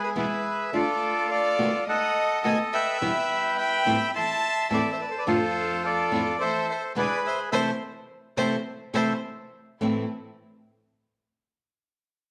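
A reedy, dark bandoneon opens this melancholic, sultry tango in A minor, carrying the melody up front while a single close violin plays an expressive second line with vibrato and portamento, and an intense, bright bowed string section adds stabs in the background. A fingerpicked nylon-string guitar with fresh strings enters at 0.2 seconds as accompaniment, the rubato feel moving around 106 BPM in 4/4 inside a wet echo chamber and small room. The band strikes an accent at 7.5 seconds, and after the bandoneon and violin stop at 9.1 seconds, the guitar and strings carry on briefly in this fragment of a longer piece.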